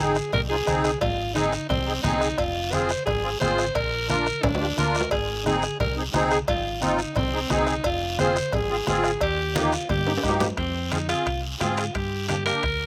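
A straight, driving 4/4 cumbia pulse at 176 BPM in F dorian carries this danceable cut from a longer piece, with a gritty, vibrato-laden alto saxophone out front over a shimmering, reedy musette accordion, a dark, round fingered electric bass, low-tuned thick-skinned congas, a soft-beaten bombo in the background, a raspy guiro, and ringing metal-shell cowbell and timbales touched with slapback echo, all captured outdoors with little reverb and drum fills at 4.4 and 9.6 seconds before a brief new section at 10.6 seconds.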